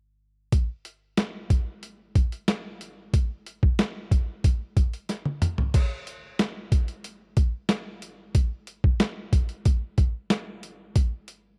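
A dry, close 1970s-style studio sound with a faint mains hum frames this dramatic, moody pop fragment at 92 BPM in a straight 4/4, where a gritty, compressed, overdriven boom bap sampler-style drum kit sits up front from 0.5 s, its thumpy kick, medium-tuned snare, hi-hat, crash cymbal and toms carrying a small-room character, with a drum fill from 5.1 s leading into the second section before the kit stops at 11.4 s.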